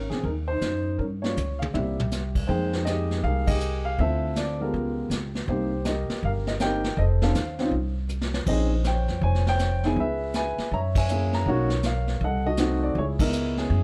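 A dark, mellow baby grand piano carries the melody up front in this relaxed, sophisticated swing jazz trio, its long sustain ringing over rich extended and altered chords. A woody pizzicato upright bass sits close beside it, while a vintage brushed drum kit sounds distant and roomy, with a punchy kick, a rolled-off top, fills at 1.4 and 8.1 seconds, and a full-band accent at 3.4 seconds. Cut from a longer piece, the performance has a warm production with light reverb.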